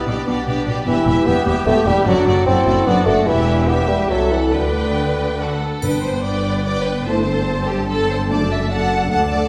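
Stormy and dramatic, this fast romantic symphonic movement in G major surges forward at 148 BPM in 3/4, with a rubato give and take to its pulse. A lush violin section carries the melody high above a second violin line with a smooth top, while a viola section adds expressive portamento to the accompaniment and a mellow solo bassoon sits up front until about 5.6 seconds. Underneath, the cello section, focused and set in the background, joins the double bass section in a deep bowed bass, and all the strings play with ensemble vibrato. At 5.8 seconds the second section opens on a G chord as a dark French horn section enters with soft-attack sustained chords in the background, marked by a very quiet, articulate touch of hard-mallet timpani and a faint, bright triangle. The harmony moves through Em, D/F# and Am/C before settling into G, Am7/G and D/F#, all heard from further back in a reverberant recital hall in this brief cut from a longer work.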